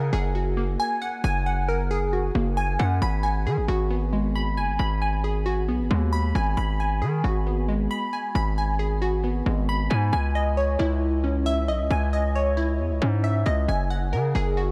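An eerie, hard-hitting trap excerpt in G# minor at 135 BPM with a half-time feel opens on a glassy, crystalline wavetable pluck spinning detuned arpeggios through chorus and tape echo, over a heavy, saturated 808-style bass with a fast attack and decaying tail, both up front in light reverb as the chords move from F#add9 to G#m7 at 3.0 seconds and C#madd9 at 10.1 seconds.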